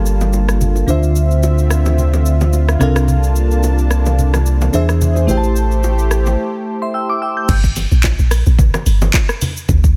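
A lightly swung sixteenth-note groove in 4/4 drives this soulful, hypnotic amapiano excerpt, built on a deep house drum kit with a deep kick, handclaps, rim click, shaker, hi-hat and crash, while hard-hand bongos and congas sit in the background. Sparkling FM electric piano with chorus and tremolo and a smooth, detuned sawtooth pad with sidechain pumping carry extended minor-ninth and suspended chords over a round sine sub bass, beneath a filter sweep that leads into a break at 6.4 seconds. The drop lands at 7.5 seconds, when a dark, percussive log drum bass enters up front in a dry mix.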